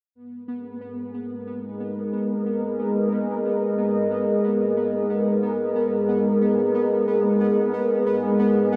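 Expansive and mysterious, this free-time ambient space-music fragment in G# minor, tuned to A4 = 437 Hz, centres on an up-front, detuned sawtooth pad with a sub octave and resonant filter swell, entering at 0.1 s and holding a G#madd9 chord from 0.2 s; at 0.2 s a quieter, bright, tempo-synced gated texture joins, pulsing on a single B3, with both parts chorused and set in a huge, wet reverb whose tail lasts 7.9 seconds.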